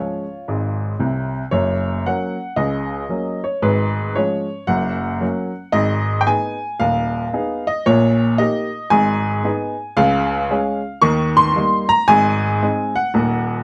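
A clear, woody upright piano, slightly detuned and up front, plays solo stride jazz at 114 BPM in 4/4 with a swinging, playful lilt, ranging from deep bass notes up to high treble notes. The harmony sits in F# major, moving through chords such as C#7/G# and G#m before shifting to Db major at 10.0 s and closing on an Ab7. Light reverb and a dark production frame this short passage, cut from a longer piece and ending at 13.6 s.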